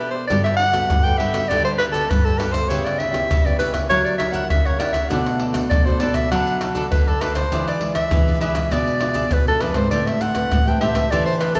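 Bathed in the wet reverb of a recital hall and dulled at the top, this bittersweet, nostalgic fragment of samba and choro puts a mellow soprano saxophone up front, carrying a jazz-style solo melody with light vibrato, subtone and scooped notes, over a crisp picked cavaquinho and a dark fingerpicked classical nylon-string guitar in the background, while a full-bodied nylon-string guitar bass with finger squeak enters at 0.3 s alongside compressed, saturated maracas, tight surdo, pandeiro and tamborim sitting up front, as the chords move from Gmaj9 through F#7b9 and E7b9 to Am9.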